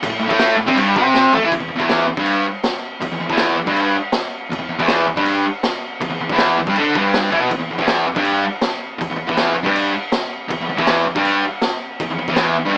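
A fuzz guitar and a raw garage drum kit kick off together in this swaggering, rowdy garage rock excerpt, the bright, double-tracked guitar riff sitting up front with fuzzy distortion while the drums hit with a boomy kick, a medium-tuned snare, toms and crash in a gritty, saturated small-room sound. A drum fill at 1.1 seconds carries the music from an A5 chord into a longer stretch on E5 starting at 1.5 seconds. Light reverb and a small-speaker character give the whole thing a rough, boxy edge, with the drums sitting lower in level than the guitar.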